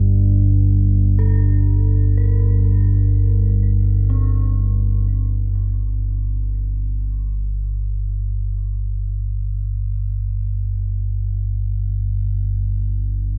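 A dark, cavernous dark ambient drone excerpt in free time and G minor, where a deep, rumbling, warbling drone with a slow attack and built-in reverb sits up front, while a faint, eerie, inharmonic FM synth bell with chorus, phaser and tape echo plays detuned arpeggios from 1.2 to 9.9 seconds as the harmony settles from Gmadd9 to G minor at 5.5 seconds.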